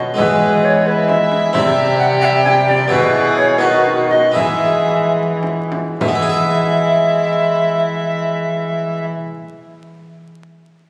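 A stately, courtly Renaissance-style consort dance in 6/8, this excerpt sets an airy tenor recorder up front, with a crisp, chiffy attack and vibrato, over a bright, plucked harpsichord, a reedy gut-string violin in the background, a mellow vintage bassoon and a nasal, bowed cello bass. A frame drum struck with hard hands sits in the background until 6.3 s, and the music slows from 2.2 s to 6.0 s. Wet church reverb and club reverb surround the ensemble, yet it sounds captured on a phone in the room, with vinyl crackle and compression.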